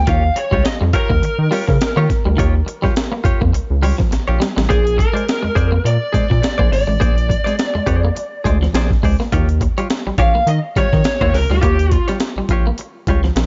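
Funk with a strutting, gritty mood, this short excerpt is cut from a longer piece and rides a lightly swung sixteenth-note feel. A breakbeat sampler-style drum kit sits up front with a thumpy kick, a high-tuned snare and hi-hat, sounding compressed and gritty, and it plays a fill from 4.1 to 4.7 seconds just as the groove moves from Eb9 to Bb9. A rubbery square-wave bass, the loudest part, bounces underneath with a fast, plucked attack and a hollow, saturated tone. Two clean, picked electric guitars fill the middle: one plays a twangy, scooped low riff, while a direct-recorded guitar adds bright accompaniment higher up with a subtle chorus. Over them, a dark lead guitar through a small cranked amp carries the melody with overdrive and analog delay until 12.1 seconds. The whole mix is wrapped in digital ambience and a dulled cassette-tape sound, and the harmony returns to Eb9 at 9.3 seconds.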